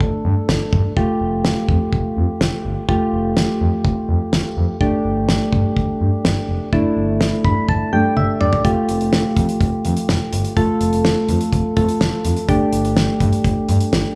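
Synth-pop at 125 BPM in a straight 4/4, bright yet wistful, this excerpt from a longer piece sets soft, round electric-piano-like synth keys with chorus over a smooth, dark gliding synth bass with portamento and a dry, damped 70s drum kit with a fat snare and tight kick, moving between Gsus2 and Fadd9 in light small-room reverb, with a keys fill from 7.2 seconds and a drum fill at 8.2 seconds leading into a new section at 8.6 seconds.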